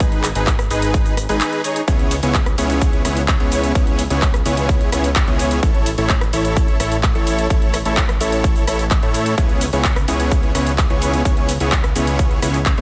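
Emotional and euphoric, this festival progressive house excerpt at 128 BPM in C# minor rides a huge, detuned supersaw riff with sidechain pumping and dub echo up front, over a fat, tube-saturated analog bass that also pumps, while a punchy, overdriven electronic kick sits up front beside a layered big-room kit of cabasa, handclaps, hi-hat, ride cymbal and rim click, treated with overdrive and studio reverb, through a G#m, C#m7, A, C#m7 progression in light digital ambience.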